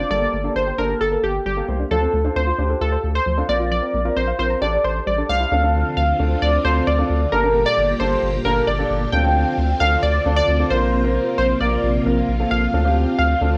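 Nocturnal and driving, this synth-pop excerpt rides on a punchy, detuned polysynth comp carrying the melody up front, over a deep, round analog bass and a concert grand piano accompaniment with a warm low end. A soft, nasal pluck plays arpeggios in the background until 5.5 seconds, when a lush string machine ensemble enters with slow-attack sustained chords. The home cassette recording lends a vintage warble to the comp and pluck, with plate reverb on the comp, pluck and piano inside a wet studio room.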